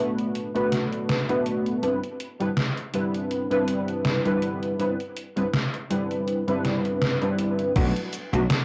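Moving at a slow 81 BPM in 4/4 with a light 55% swing on the sixteenths, this short vaporwave clip cut from a longer piece feels faded and nostalgic, centered on C lydian. Warbly lo-fi synth keys carry the accompaniment from 0.0 s, their detuned, mellow tone sitting up front and smeared by analog chorus, cassette tape wobble, tape echo and plate reverb as the harmony moves from Bm7 to Cmaj7. A gated 80s digital drum machine joins almost at once with cabasa, hi-hat, snare and crash, its gated, overdriven snare ringing through a large room. Near the end, at 7.8 s, a gritty, bright slap bass lands on B1 with tube saturation as the chord returns to Bm7, and a thumpy overdriven electronic kick punches in alongside it. The whole thing carries the hazy character of a home cassette recording in a moderate studio reverb.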